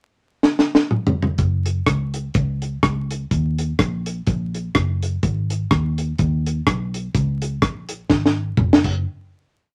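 This cheerful, joyful ska piece swings along at 125 BPM in 4/4 in F# major, with a light shuffle on the eighth notes. A deep reggae drum kit opens the pickup bar at 0.4 seconds with a fill, then settles into a ska beat with a side-stick backbeat. The kit sounds dry and dark, with a high-tuned snare, a tight kick and a rolled-off top, sitting up front alongside crash, hi-hat, rim click and toms. At 1.4 seconds a fingered electric bass enters for the head with a round, punchy, foam-muted walking line, amped and placed up front, with slides between notes. Another drum fill leads into a brief final hit, all wrapped in light reverb and a gentle layer of vinyl crackle.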